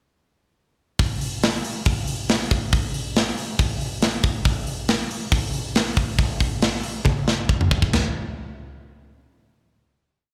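A tight, up-front acoustic metal drum kit drives a relentless, heavy 138 BPM groove in straight 4/4 from 1.0 seconds, with bright cymbals, a medium-tuned snare and a tight kick in a mid-forward, live-club sound, rolling into a drum fill at 7.1 seconds before landing on a final hit at 7.9 seconds.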